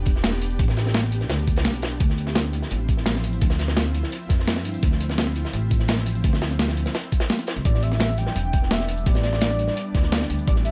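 A knocking, overdriven electronic kick sits up front in this soulful, dreamy liquid drum and bass excerpt, alongside a gritty sampler-style breakbeat kit with cabasa, a dark, rolled-off acoustic breakbeat kit, a woody pizzicato upright bass and an ethereal, airy chorused pad holding sustained chords, before a velvety, mellow synth lead with vibrato and dub echo enters at 7.7 s.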